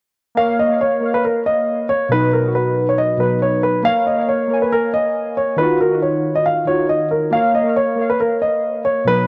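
A dry, gritty recording with light reverb and a small-room ambience frames this cold, menacing half-time hip hop passage, cut from a longer piece. Warbling, detuned lo-fi synth keys with chorus lay down a nostalgic accompaniment from 0.3 seconds, while a dark, mellow concert grand with a deep low end carries the melody up front from 0.4 seconds. The harmony moves from Bbm through B and back, touching Ebmadd9 before settling on Bbm again.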